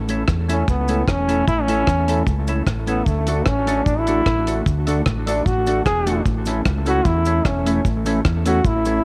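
A bright, present trombone carries a joyful solo melody with light vibrato, entering at 0.5 seconds in this cheerful ska cut at 151 BPM in A major, moving from A to D and back to A. Up front beside it, a round, dark fingered electric bass and a deep, dry reggae drum kit with a tight kick, hi-hat and rim click drive the straight 4/4 feel. A clean, mellow electric guitar with tape echo and a fat, lightly overdriven tonewheel organ stabbing through a slow rotary speaker fill the middle, while a grainy cabasa sits in the background of a small, lightly reverberant room.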